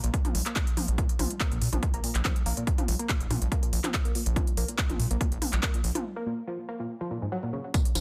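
A gritty, saturated synth bass anchors this dark, driving peak-time techno excerpt at 142 BPM, built from square, sawtooth and synced oscillators between Bb1 and Bb2 and pumping against the sidechain over a Bb5 chord. A punchy electronic kick sits up front from 0.1 to 7.8 seconds alongside a techno kit of handclaps, smooth hi-hats, tambourine and toms, whose hats, toms and percussion also pump. Above them a tight, wave-folded sequenced synth riff runs from Ab2 to Bb3, colored with chorus, phaser, overdrive, delay and 12-bit sampler grit, all in light digital reverb and a dense, heavily limited master, with a break from 6.1 to 7.7 seconds.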